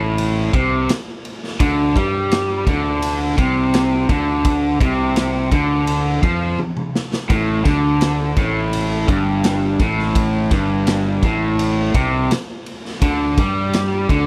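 This short excerpt of swaggering, gritty blues rock with a southern rock streak opens on a bright, overdriven guitar riff, double-tracked and up front, alongside a dark, fuzz-drenched fingered electric bass with a round, punchy tone. The drum kit joins at 0.2 seconds. Its punchy kick, medium-tuned snare, ride cymbal and toms sit in a bright stone room with a pumping character, and the kit sounds saturated with a rolled-off top. The power trio moves at a straight 84 BPM in 4/4, tuned slightly low with A4 at 436 Hz. The riff rides over suspended harmonies, moving from Gsus4 to Csus2, then Gsus2, before landing on Csus2 at 13.0 seconds, with a drum fill arriving at 6.6 seconds. Little reverb keeps the sound close and raw.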